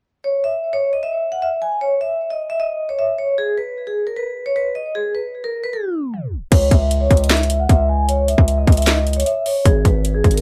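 Dark and melancholic, this half-time trap hip hop excerpt at 153 BPM in C# dorian opens with a ringing, low-pass-filtered vibraphone melody with medium motor vibrato, which a tape stop interrupts from 5.7 to 6.5 seconds; then, at 6.5 seconds, a saturated, heavy distorted 808-style bass and an up-front electronic trap kit of hard-clipped kick, sharp snare, metallic hi-hats, handclaps and crash cymbal join in light reverb as the harmony moves from C#m to G#m.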